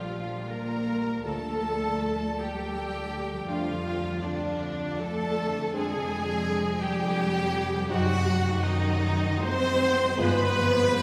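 A warm, expressive cello section carries the bass of this solemn, melancholic classical excerpt in a rubato 3/4 at around 70-85 BPM, joined by a woody double bass section. Above them, a clear, focused violin section sings the melody over a lush second violin line, vibrato-rich violas, ringing thumb-plucked harp arpeggios and clear trumpet stabs, while a mellow French horn section holds background chords from 1.2 to 10.5 seconds. Dry, very quiet timpani enter at 10.2 seconds as the harmony moves to a G7b9, all bathed in a long cathedral reverb.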